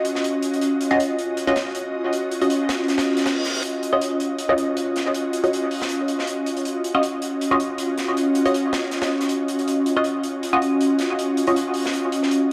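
An ethereal, airy pad sits up front in this atmospheric, frenetic drum and bass and jungle excerpt, holding detuned, slow-blooming chords through its full 12.5 seconds with ensemble chorus and its own reverb. From 0.9 seconds a muted, nasal dub chord stab joins in the same register, its resonant plucked tone shaped by a moving notch, a phaser and a dub echo. Underneath, an acoustic studio drum kit plays hi-hat and a medium-tuned snare at a lower level, swung on the sixteenths and thinned by high-pass filtering on the hats, snare and room sound. A brief electronic reverse cymbal appears in the background at 3.1 seconds. The production is dark, set in a moderate echo chamber reverb with small room ambience and a layer of vinyl crackle.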